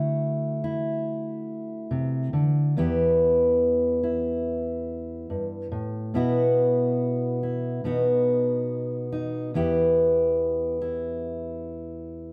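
A straight, unhurried 4/4 pulse carries this reflective, haunting folk passage, cut from a longer piece, in which a fingerpicked steel-string acoustic guitar plays alone throughout its 12.3 seconds. The jumbo guitar sounds full-bodied and up front, moving from Dadd9 to Em, then through Bsus4 and B before settling back on Em at 9.6 seconds. A wet studio reverb places the recording further back in the room, lending the single instrument a lingering, spacious air.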